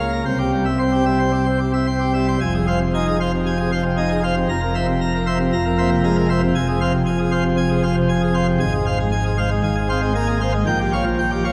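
A solo pipe organ opens at full plenum, its mixtures giving a brilliant, up-front sound with audible chiff as the pipes speak. This stormy, dramatic classical toccata is cut from a longer piece, and the organ's baroque voicing spans from deep bass notes to high treble. A brief opening gesture gives way at 2.4 seconds to a longer passage that runs to the close at 11.5 seconds. The harmony moves through minor and dominant-seventh colours and ends on a half-diminished chord. A church acoustic with a long, wet reverb tail surrounds the full organ sound.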